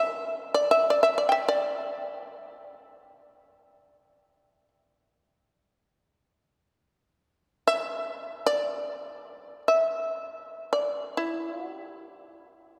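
Austere and still, this fragment of Japanese traditional chamber music sets a lone acoustic shamisen up front in free time, its fretless, plectrum-plucked tone bright and percussive with a buzzing edge. The solo spans from G4 to G5 across its 12.8 seconds, and a wet church reverb with a 3.7-second decay surrounds each note with the resonance of a church or concert hall.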